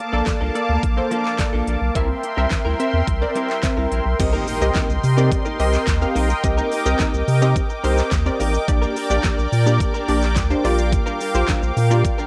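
A straight dance-pop groove drives this energetic yet bittersweet clip from a longer piece, with an up-front electronic drum kit of knocking kick, fat snare, crisp hats, handclaps, shaker and crash, all coloured by cassette tape grit. A thick, saturated sub bass pumps beneath a smooth, detuned sawtooth pad and punchy filter-plucked chord stabs that both carry chorus and sidechain pumping, while a clean, direct-recorded electric guitar picks a compressed riff through an ensemble chorus. The chords move from Bbmaj7 and C7 into Cm7 as the harmony shifts, and a very quiet electronic impact enters at 4.4 s, all set in a homespun cassette-tinged digital ambience.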